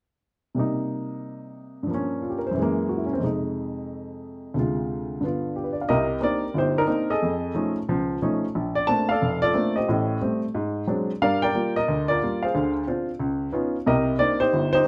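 A brisk swung 4/4 at 180 BPM carries this moody, cool jazz passage in C minor, cut from a longer piece, with a solo baby grand piano spanning F1 to A5 from 0.5 to 14.9 seconds. The piano sounds intimate and natural, placed up front with short sustain and audible action noise, set in a moderate studio reverb. Its harmony moves through minor sevenths, half-diminished chords and altered dominants, such as Cm7, F#9 and Ab7#11, shifting into a second section at 5.9 seconds before settling back on Cm9.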